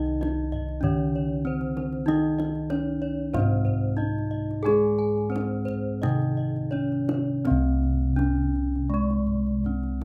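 This Javanese gamelan piece, cut from a longer work, moves at a stately 82-97 BPM in a straight 4/4, with a shimmering mood throughout. Up front, a bronze metallophone struck with a wooden mallet carries the ringing melody in the middle register. Beneath it, a second metallophone played with a horn mallet supplies lower accompaniment with a boxy, small-room warmth. A third, higher metallophone, also horn-struck, adds bright, airy arpeggios whose paired tuning produces shimmering beats, and it stops at 7.4 s, just as the music shifts into a new section at 7.5 s. The bossed gongs, played with padded beaters, anchor the bass with a round, dark, mellow tone that is soft and smooth yet sits prominently in the mix. A deep kendang played with soft hands stays in the background, and light reverb frames this rough home-demo recording.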